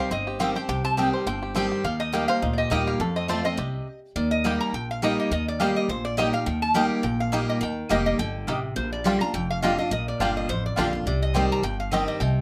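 Driving at 208 BPM in 4/4 with a light swing on the eighth notes, this short cut from a longer bluegrass tune has a rustic, hard-charging feel, moving through Cm, Eb and F before a brief stop at 3.9 seconds. Up front, a picked dreadnought acoustic guitar carries the accompaniment with a full-bodied tone, while a lap resonator guitar, played with slide and fingerpicks, takes the upper melody in a metallic, nasal voice. A twangy, percussive banjo, also fingerpicked, shares the melody a little further back in the mix. Underneath, a pizzicato upright bass sets a woody, thumpy pulse from 0.1 seconds, and a mellow, round mandolin adds double-string stabs. After the stop, the second section settles on Eb, shifts to Bb6 and returns to Cm, set in a moderate small room that keeps the band close and natural.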